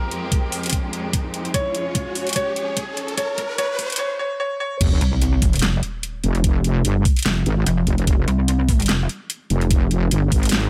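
A clear, slightly worn grand piano melody with dub echo opens over bowed, vibrato-rich studio strings that pump against the beat, while a riser and drum fill from a tape-warm electronic kit with a huge snare and metallic hats build tension through a chaotic, heavy dubstep passage cut from a longer piece. At 4.8 seconds the drop lands with an impact and sub drop, and a saturated, detuned sawtooth wobble bass with chorus and overdrive enters, joined at 5.0 seconds by a pulsing sine pluck wobble bass. The knocking kick and up-front bass dominate a dry, half-time groove with a light swing.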